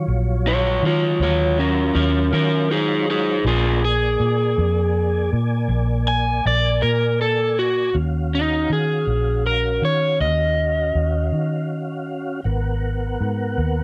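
A light reverb frames this mournful slow blues in 12/8, cut from a longer piece, where a crunchy, overdriven guitar enters up front at 0.5 s and solos through the opening half before carrying the melody until 12.4 s. Beneath it, a dark, round, foam-muted electric bass sits prominently in the mix, while a smooth tonewheel organ holds soulful sustained chords with chorus vibrato, audible key click and a slow rotary speaker. The harmony moves from Ebm9 to Bb7, returns to Ebm9 at 7.9 s, and settles on Abm9 near the close.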